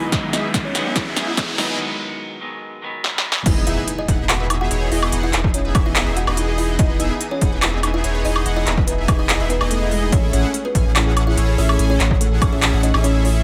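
A half-time groove at 144 BPM drives this bright, euphoric future bass excerpt in E major, with a punchy, overdriven electronic kick and an up-front big-room kit of snare, crisp hats, handclaps, woodblock and crash, both re-recorded in a large room. It opens on a build-up over Emaj7: a woody, hollow kalimba carries the melody under a filter sweep, a dark, clean picked electric guitar with spring reverb and dub echo accompanies until 3.4 seconds, and a background riser climbs through drum fills before a short break. At 3.5 seconds the drop lands with an impact, bringing in a deep, thick saturated sub bass and a very quiet, lush detuned unison pluck playing arpeggios. Throughout, a fat, sawtooth polysynth with analog chorus and ring modulation plays the riff, pumping with the sidechain alongside the kalimba and bass, while an earthy, very quiet chamber string section holds sustained bowed chords with light vibrato. 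The harmony shifts to Amaj7 at 10.1 seconds, and the whole mix sits in light reverb.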